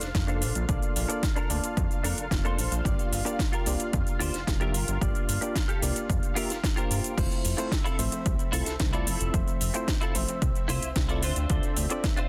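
A straight 4/4 nu-disco groove at 111 BPM in F major drives this sunny, feel-good excerpt, built on a punchy, overdriven electronic kick and a house kit with a cracking snare, metallic hats, shaker and crash, under a fat, detuned sawtooth analog bass with a filter sweep, a twangy, clean electric guitar riff colored by chorus, low-pass filter and digital delay, a reedy, lightly overdriven electric piano with sidechain pumping and delay, and a lush unison pad holding sustained chords through phaser and pumping, moving through Bbmaj7, Gm7, Fmaj7 and Dm7 in a dry, dense, heavily limited modern mix.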